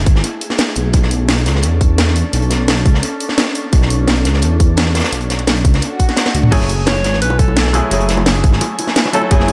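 Rolling and melancholic, this liquid drum and bass excerpt at 172 BPM sets a glassy, warbling FM pad and a deep, rumbling detuned saw bass against layered kicks, a gritty breakbeat kit and a tape-warm garage kit with cracking snare, until a background swell from 5.9 seconds and a brief drum fill at 6.2 seconds usher in a breathy alto saxophone with dub echo, brilliant baby grand piano and round low-tuned bongos, all within an echo-heavy chamber reverb.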